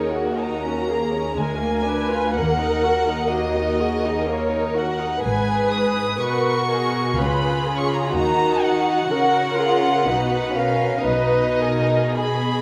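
Classical string-orchestra writing in a slow romantic movement, this serene, lyrical passage is cut from a longer piece and moves at 62 BPM in 3/4 with a rubato feel. Up front, the violins carry the melody from C#5 to D#6 with light vibrato and a sul tasto softness, while a second violin line sits beneath in a warm, intimate register. Violas fill the accompaniment with vibrato and soft attacks, and a rich, floating cello section shares the bass with a dark, close double bass section, the basses falling silent at 12.1 s just before the others finish at 12.6 s. The harmony opens on D#m7 and passes through G#m7 and C#7 before settling toward B and G#m/B. A wet scoring-stage reverb with a 1.9-second tail gives the ensemble a spacious, glowing bloom.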